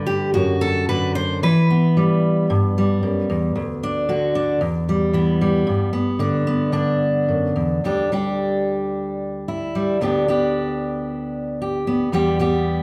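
Heard in a large, reverberant studio room with a lingering 1.3-second tail, this gentle, peaceful folk fragment features a solo fingerpicked steel-string dreadnought acoustic guitar, bright, full-bodied and up front in the mix, spanning D2 to C5. In D major at 112 BPM in 4/4 with a loose, rubato feel, it moves through D/F#, Em, G and D, then Em and G again, before a new passage at 7.8 s settles on Dsus4, G/D and Em.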